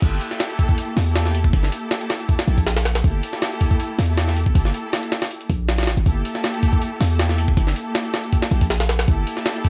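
Set in a digital ambience, this short cut from a longer drum and bass and jungle track sits in G dorian at 159 BPM and plays as a drop throughout, with an atmospheric yet raw mood over a single Gm69 chord. A gritty, compressed sampler-style jungle kit sits up front with a thumpy kick, high-tuned pitched-up snare, hi-hat and crash, alongside a deep, boomy 808-style sine bass with a noise layer and fast, decaying attack that stops at 9.3 s. Behind them, a lush symphonic string ensemble holds bowed chords with vibrato until 9.7 s.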